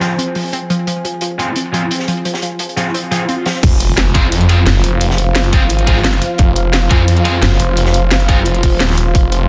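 A warbling, vintage ambient pad, bright analog pluck arpeggios with phaser and delay, fuzzy double-tracked guitar stabs and a gritty, saturated breakbeat kit open this aggressive, futuristic slice of dark technical drum and bass. A background swell and impact arrive at 3.1 seconds, and at 3.6 seconds the drop lands with a snarling, detuned saw bass pumping up front, a tight tape-toned electronic kick and a second kit with a cracking snare, bright hats and crash cymbal. Brief bursts of thick, growling FM bass punctuate the drop over a dense, heavily limited master with light digital ambience.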